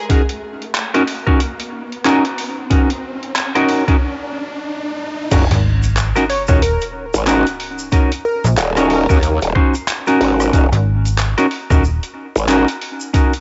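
A rising sound effect and a brief blip of a punchy, detuned unison lead open this playful, gritty glitch hop cut in Eb minor at 92 BPM, where bright, clean semi-hollow electric guitar stabs pump against a thumpy, pitched-down electronic kick and a tape-warm, sampler-style boom bap kit of handclaps, hi-hat, rim click and crash, until the drop at 5.3 seconds brings an electronic sub drop, a growling, wobbling bass with chorus, a snappy, metallic FM slap bass, a grainy tube shaker in the background and the lead's catchy return, all under the murky haze of a home cassette recording and spring reverb.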